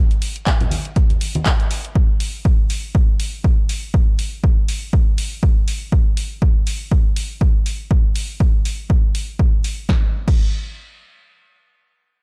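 An up-front electronic kick drum, analog and punchy with the character of a large room, drives this groovy, funky house excerpt at 121 BPM in 4/4, entering at 0.5 s. Around it, an analog drum machine supplies handclaps, hi-hat, a punchy snare and crash cymbal, with sidechain pumping breathing through the hats and cymbals. A tambourine and congas, acoustic and hard-handed, sit in a small room and pass through a low-pass filter and their own sidechain pumping, heard only until 1.9 s. A 56% swing on the sixteenths gives the pattern a loose, bouncing feel. The overall sound is dry with little reverb, and the groove moves into a new section at 9.9 s before the cut from the longer piece.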